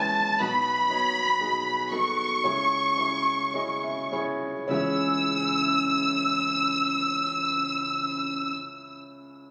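Captured on a phone in a club-like room with light reverb and compression, this excerpt from an emotional, longing pop ballad in C# minor moves at 51-62 BPM and slows through its first 4.7 seconds, as a lush, vibrato-rich violin section carries the high melody over a clear, intimate baby grand piano with audible action noise and long sustain, which adds a fill from 3.0 seconds, and a full-bodied picked steel-string acoustic guitar with finger squeak playing arpeggios through digital delay across a B to C#m progression.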